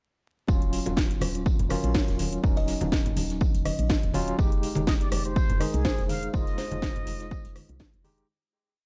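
Late-night deep house at 123 BPM in Eb dorian, with a punchy overdriven four-on-the-floor electronic kick, a programmed house kit with cracking snare, metallic hats and rim clicks, a very quiet unplugged kit playing a looped, edited breakbeat, background congas, a round, dark FM bass in a dotted rhythm, and barky, gritty tine electric piano stabs with fast tremolo and sidechain pumping over Ebm7 and Fm7, while a buzzing kalimba with analog delay offers short phrases from 1.7 seconds and a breathy, plunger-muted jazz trumpet with vibrato enters at 4.9 seconds, all set in dry, crackling vinyl ambience before a fade-out from 5.7 seconds.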